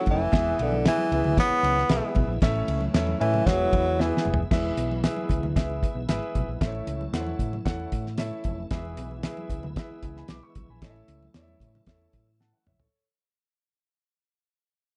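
A dark, warm production with light reverb and a muted top end frames this short cut from an uptempo 1960s-style soul number in E major, moving at 114 BPM with a straight, joyful, danceable 4/4 feel. A breathy tenor saxophone carries the melody up front for only the opening 4.4 seconds, its subtone voice marked by light vibrato, scooped notes and a jazz-style phrasing bathed in plate reverb. A clear, intimate concert grand piano supplies accompaniment throughout, its deep bass and audible action noise also set in plate reverb, while a very quiet tonewheel organ holds sustained chords with a lightly overdriven, slow rotary shimmer. Underneath, a round, amped hollow-body short-scale electric bass and a cloth-damped, thuddy drum kit with a fat snare, tight kick and dark cymbals drive the groove, joined by faint, bright congas struck with hard hands. Drum fills arrive at 4.0 seconds and again near the close, and after the saxophone drops out the band carries on through a fade-out as the harmony rocks between E and A.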